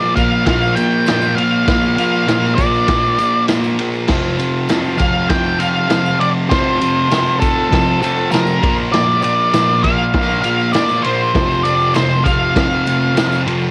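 A straight 4/4 beat at 99 BPM drives this rowdy, raw garage rock snippet in F major, with a punchy vintage drum kit entering at 0.2 s, its cymbals dark and its top rolled off, under a thick, double-tracked fuzz guitar riff and a dark octave-fuzz lead melody, both up front, while a buzzy combo organ holds very quiet sustained chords, a jingly tambourine sits far back, the chords move between Bb and F, and the whole dry, home cassette recording keeps its rough edges.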